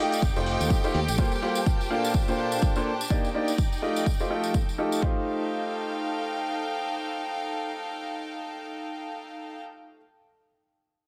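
A clear, woody upright piano riff opens this feel-good piano house excerpt at 125 BPM in F mixolydian, joined from the start by a studio violin section holding sustained chords with vibrato and portamento and a rich, earthy chamber string section spreading a bowed texture. Within the first second a punchy, up-front electronic kick, very quiet metallic hi-hats and a tambourine layered with maracas and group handclaps set a swung 4/4 groove, while a bright, growly fingered electric bass plays only briefly, from 0.2 to 1.2 s. The piano, strings and bass all pump against the kick, and the piano also carries a low-pass filter and tape echo. The harmony moves from F9 through Gm11, Bbmaj9 and Ebmaj7 before landing back on F9, giving an uplifting lift. At 5.0 s the violins, hi-hats and tambourine drop out, and the kick follows at 5.2 s, leaving the piano and chamber strings to carry the second section in a moderate plate reverb with small-room ambience.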